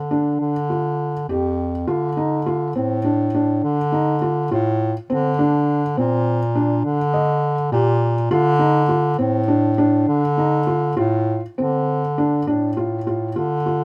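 A smooth-topped bass clarinet opens this restless, urgent chamber piece, carrying the low bass line up front as a felt-muted upright piano joins at 0.1 seconds with intimate, boxy arpeggios and audible action noise, the two moving through Dmadd11, Dm and Eb in D phrygian at 205 BPM in a straight 11/8, with light reverb, before a new passage settles on Dm7 at 11.6 seconds and this cut from a longer work ends at 13.8 seconds.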